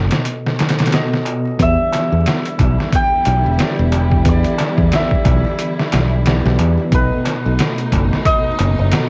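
A swung, compressed sampler-style drum kit with a thumpy kick and an overdriven edge sits up front in this brooding, smoky trip hop excerpt, alongside a dark, round fingered bass, a deep clay-shell darbuka in the background, and a clean tine electric piano treated with harmonic tremolo and tape echo. At 1.6 seconds a shimmering, ringing hammered santur melody and a soft-attack bowed string section with 12-bit sampler grit arrive as the harmony moves from B7 to Em7, the whole excerpt captured as a dry home cassette recording with vinyl crackle.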